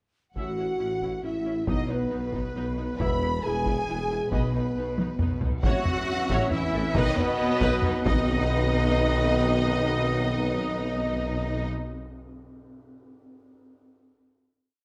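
A hard-stick taiko ensemble drives a big drum ostinato through this heroic, adventurous epic orchestral film cue in 3/4 at 136 BPM in B mixolydian, as rich and expressive violin sections and an airy flute section double the tune at the octave over a lush viola ostinato, dark French horn and clear trombone chords, bright trumpet stabs, and a bass line of cellos, double basses and mellow tuba, with very quiet cymbal swells and tam-tam strokes entering at 3.0 s, a drum fill leading into the outro at 5.6 s, and a final hit at 8.3 s in the scoring-stage reverb.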